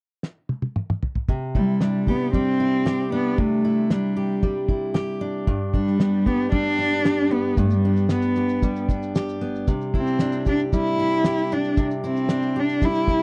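A dark, woody bowed cello carries the melody with vibrato from 1.6 seconds in this carefree, sunny acoustic pop excerpt, sitting close and up front. It follows a drum fill at 0.2 seconds on a cloth-damped, thuddy kit with a fat snare, tight kick, shaker, toms and a rolled-off top. A full-bodied fingerpicked steel-string guitar enters at 1.3 seconds over Cadd9 and G chords, all captured in a dry, close 1970s-style studio sound.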